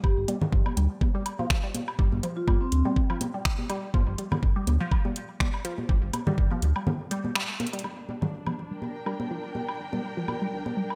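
Minimal techno at 123 BPM in G minor, sparse and quirky, with a swung groove built from a knocking electronic kick, a garage kit of finger snaps and metallic hats, and overdriven woodblock and congas, alongside a round, deep analog bass pumping beneath a juicy, squelchy resonant blip pluck riff that carries a phaser. A mellow soft-mallet vibraphone rings with slow motor vibrato for the first 3.0 seconds, a filter sweep shapes the arpeggio until a break with a band accent and drum fill, and at 7.8 seconds a dark, lush symphonic string section arrives on G minor, joined briefly by a muted, very quiet dub chord stab at 9.1 seconds. The bright 1980s-style digital production sits in a moderate hall reverb.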